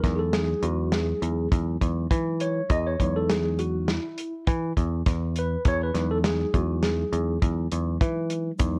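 A clean tine electric piano takes the lead over a growly, up-front picked electric bass and a dry soul drum kit with a punchy kick and rolled-off top in this driving, intricate progressive instrumental in 5/4 at 102 BPM, holding an Emaj7 chord in E major through light reverb and the worn, warbly pitch drift of old cassette tape, before a grainy tube shaker slips in faintly at 8.6 seconds as this fragment of a longer piece cuts off.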